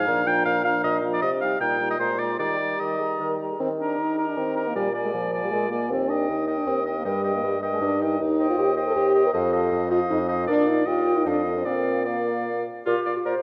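Cheerful and graceful, this quick classical-period movement for wind quintet moves at 156 BPM in 3/4, opening in Eb major before settling into Bb major from 8.2 seconds. It is a short fragment cut from a longer piece. A hollow, silver-toned concert flute with vibrato carries the melody, while a warm oboe, up front and also with vibrato, sings a second line beneath it. A clear French horn and a dark, distant clarinet with a soft attack fill out the accompaniment, the clarinet sitting in the background. An up-front bassoon with a light vibrato anchors the bass, and all five parts play throughout. The harmony passes through chords such as Cm, Bb7 and Eb, then F7 and Bb after the change of key, and the ensemble is heard in a resonant concert hall with a reverb time of about 1.9 seconds.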